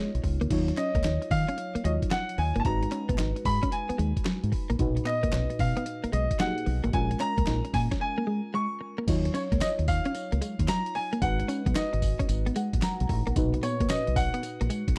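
A swung sixteenth-note groove at 112 BPM drives this confident, punchy new jack swing cut in Eb minor, built on a gritty, compressed sampler-style drum kit with a thumpy kick, crash, hi-hat, tambourine and snare, a deep, round fingered electric bass up front, and crisp group handclaps set back in the mix. A clear, polished baby grand piano carries the melody over a soft FM electric piano treated with chorus and phaser and a clean, direct-recorded electric guitar riff glazed with analog chorus, moving through Ebm9, Abm7, Bmaj7 and Bbm7. A break arrives at 8.0 seconds before the second section, and the electric piano takes a short fill at 12.3 seconds, all captured in a dry, close 1970s-style studio sound with digital ambience.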